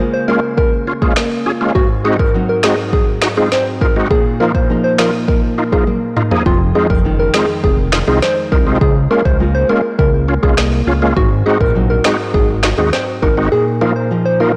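A fat, detuned analog bass stands out once it arrives at 6.5 seconds, its thick sawtooth and square-wave tone sitting up front with a fast attack and mellow sustain. Around it, this sultry, bouncy dancehall excerpt is built on a dark, full-bodied nylon-string guitar playing thumb-plucked arpeggios with audible finger squeak, while a round, gentle FM synth lead carries the melody with a keys-like, decaying attack, chorus and digital delay. A reedy, bright tonewheel organ supplies accompaniment with key click, chorus vibrato and a fast rotary speaker. An electronic afro-pop drum kit enters at 0.6 seconds with a deep kick, woody snare, finger snaps and toms, carrying tape-warm, 12-bit sampler grit and a small-room character, and a drum fill leads into the bass entrance. The chords cycle through Db6, Ab7 and Bbsus4 with a turn to Fm7, all under light reverb in a blown-out, overdriven mix.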